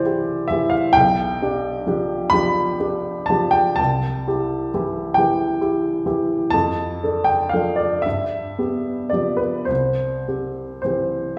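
Serene and nostalgic, this brief excerpt from a longer romantic nocturne unfolds in C major at a slow 34-45 BPM in 12/8, played with flexible rubato. A lone baby grand piano carries everything, ranging from B1 up to B5 with a warm, intimate tone in which the soft clatter of its action can be heard and notes decay fairly quickly. The piano sits up front, yet the listener seems placed further back in the room, with a small-room ambience blended into a wet recital hall reverb that lingers for about 1.5 seconds. The harmony moves gently from C through G7 over B, back to C at 3.8 seconds, then to D minor over F and G7 before settling home on C at 9.7 seconds. The tuning sits slightly high at A4 = 442 Hz.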